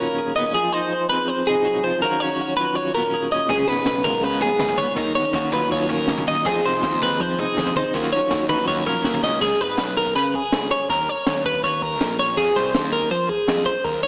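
Intricate and bright, this math rock and midwest emo cut, taken from a longer piece, moves at 162 BPM in a straight 4/4. Two clean, compressed twelve-string electric guitars sit up front from the start: one plays warm accompaniment with tremolo and slapback echo until 9.4 seconds, while the other, brighter one spins high arpeggios with slapback echo through to the end. At 3.5 seconds a fuzzy, overdriven picked electric bass and a jazz drum kit played with brushes enter, the kit airy and polished with dark cymbals, a high-tuned snare and a boomy kick. A drum fill at 9.2 seconds leads into a new section where the harmony shifts from minor-ninth and seventh colours to bare power chords before settling on Fm7. The whole mix is bathed in a lush hall reverb alongside a small room reverb, giving it a big arena scale that also carries a small-speaker character.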